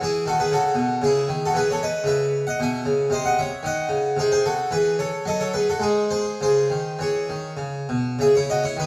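A solo French-style harpsichord with two sets of strings sits up front, close-miked and dry, its plucked tone full and immediate. This short baroque-style suite movement in C# minor, cut from a longer piece, moves in 3/4 with a rubato feel, drifting between 96 and 119 BPM. The mood is introspective and solemn, the instrument ranging from B2 up to G#5. The harmony settles on C# minor, turns through G#7 over B# at 3.1 seconds, then passes through F# minor with added sixth and ninth and G# before returning home at 6.4 seconds. A moderate scoring-stage reverb and a layer of vinyl crackle give the recording an aged patina.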